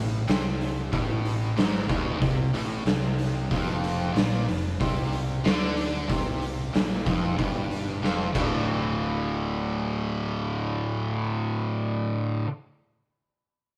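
Heavy and ominous, this stoner and doom metal excerpt sets a double-tracked, picked fuzz guitar riff up front over a growly, overdriven fingered electric bass, while an oversized low-tuned drum kit with a punchy kick, gritty saturation and a rolled-off top rings in a bright stone room from 0.3 seconds until a drum fill at 8.0 seconds, as power chords shift from D5 to F5 and back in a rough rehearsal-room recording with light reverb.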